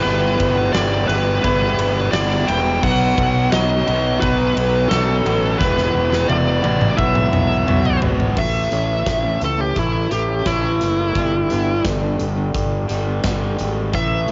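A high-gain lead guitar sits up front, its bright, distorted melody ranging from E4 to G5 and breaking into a solo at 8.4 seconds in this angsty, cathartic piece of quiet-loud alternative rock in E minor at 86 BPM. Beneath it, a round, fuzzy fingered electric bass with an overdriven, direct-and-amped tone holds the low end up front. Further back, a raw garage guitar with overdrive and a thick fuzz guitar play riffs, and the fuzz guitar stops as the second section arrives. A huge arena drum kit enters at 0.4 seconds with a fat snare, punchy kick, crash, ride, hi-hat and toms in an airy, polished big-room sound, and it plays a fill leading into that second section. There a fingerpicked plugged-in steel-string acoustic guitar adds dark, woody arpeggios in the background, with the full body of a jumbo and the dull ring of old strings, while the chords move from Em/G through B, Em7 and Bsus4 to A and G. 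The piece is recorded at home on cassette with light reverb and a muffled top end, and it is cut from a longer work.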